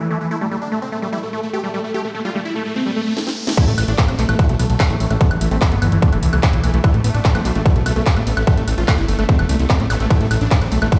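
A huge, detuned supersaw melody with phaser, delay and sidechain pumping opens over a swarming, very quiet drone and a squelchy acid bass riff under a filter sweep, building with a background riser and a drum fill until the drop at 3.6 seconds, when a distorted, up-front electronic kick, an overdriven techno kit with cracking snare and a fat, saturated analog bass drive this alien psychedelic trance at 147 BPM in A minor, all heard in a bare stone room on a big sound system.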